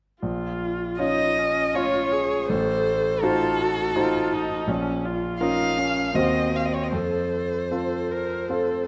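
A close, detailed recording places a string-and-piano group in a moderate concert hall, its reverb lending a gentle bloom to this brief cut from a longer classical piece. It is a slow romantic movement in 3/4 at about 81 BPM, in Bb minor, with uneven beats and free rubato that give it an elegiac, yearning mood. A clear concert grand, up front with deep bass and a smooth, vintage character, carries the accompaniment from 0.2 seconds alongside a warm, expressive viola, bowed with vibrato and portamento. The violin enters with the melody at 1.0 seconds, also up front, its soft attack, vibrato and sliding portamento making the line sound intimate and sorrowful. Beneath it the harmony moves from Bb minor through a diminished seventh and back, settling toward an F chord near the close.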